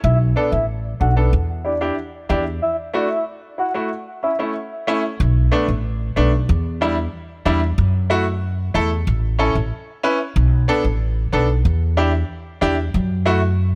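A studio reverb wraps this short dancehall cut, giving it a hypnotic, sultry air over a straight four-beat pulse. The upright bass sits up front for the whole passage, its pizzicato steel strings sounding woody and thumpy. A clear baby grand piano joins at 0.4 seconds as accompaniment, intimate and natural, with long sustain and audible action noise. The soft, octave-layered synth lead carries the melody only until 4.4 seconds, a full, round and dark tone with a sub octave beneath it, dressed in chorus, tremolo, vibrato and delay. A break arrives at 2.6 seconds, and the Bm7, Em7, F#m7, A cycle then repeats through the second section with bass and piano alone.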